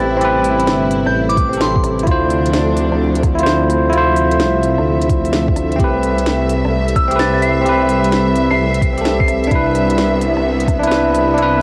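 A bell-like tine electric piano carries gritty, tape-echoed chords through this rainy, ghostly future garage excerpt in A minor at 129 BPM with a swung 16th feel, over a soft string section, a rumbling detuned saw bass, a soft electronic kick and woody, crisp electronic drums, while a glassy, warbling synth bell appears at 1.1 and 7.0 seconds, all wrapped in cassette tape warmth and vinyl crackle.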